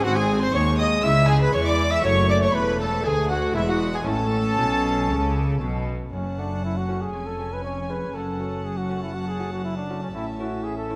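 Brilliant and lively, this excerpt from a baroque-style concerto movement moves at 119 BPM in 4/4, beginning in A major and turning to F# minor at 6.1 s. A dark, up-front solo trumpet with light vibrato and a soft attack carries the melody, while a period-style gut-string ensemble surrounds it: a close, high violin section also plays the melody, a rich second violin section adds a smooth-topped line, and a viola section fills the accompaniment over a reedy double bass section and a nasal cello section on the bass. In the background a delicate, fingerpicked lute with double gut strings supports the harmony, all heard in a moderate scoring-stage reverb.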